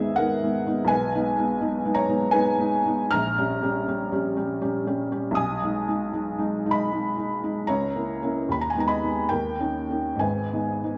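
A felt-muted upright piano plays alone from the first moment, its soft, mellow tone sitting close and intimate in this brief 11-second fragment of a longer romantic nocturne. The mood is yearning and wistful, moving in a flexible 3/4 with rubato that lets the pulse drift between 63 and 87 BPM. Set in G# minor, the harmony leans on diminished colourings before a D#7 pulls the phrase home to G#m at 10.2 seconds. The playing spans a broad register, from a deep G#1 up to E#6. A moderate recital-hall reverb gives the piano a gentle sense of space, while a worn cassette-tape quality adds a warbling pitch drift that lends the recording an aged, fragile character.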